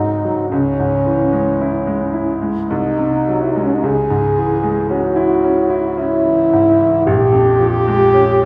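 Classical romantic music for French horn and grand piano, this brief passage cut from a longer piece carries a yearning, melancholic mood at a slow 55 BPM in 3/4, with a flexible rubato feel in C# minor. The French horn carries the melody from 0.0 to 8.5 seconds, its warm solo line sitting up front in a classical style and colored by a light vibrato. The grand piano accompanies throughout, its clear, smooth tone having a vintage quality and a long sustain that lets each chord ring. The harmony moves from G#7 over C# into C# minor, passes through G#7 over B# and back to C# minor, and turns to Bbm7 near 7.1 seconds. A wet recital hall reverb with a 1.4-second decay places the listener further back in the room, giving the duo a spacious concert setting.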